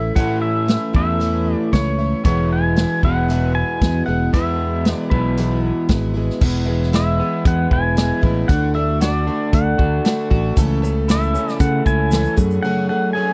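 A dry, close 1970s-style studio sound frames this hopeful, open-road slice of folk rock and heartland rock, with a punchy, up-front vintage drum kit and a fingered electric bass carrying a straight four-four pulse. A bright, twangy pedal steel guitar sings the melody with fingerpicked slide and volume swells over a shimmering, octave-doubled twelve-string acoustic and a dark, slightly broken-up electric guitar riff with spring reverb. At 6.4 seconds a very quiet, smooth tonewheel organ with key click and slow rotary speaker adds sustained chords, and a grainy tube shaker sits in the background from 10.6 to 12.6 seconds.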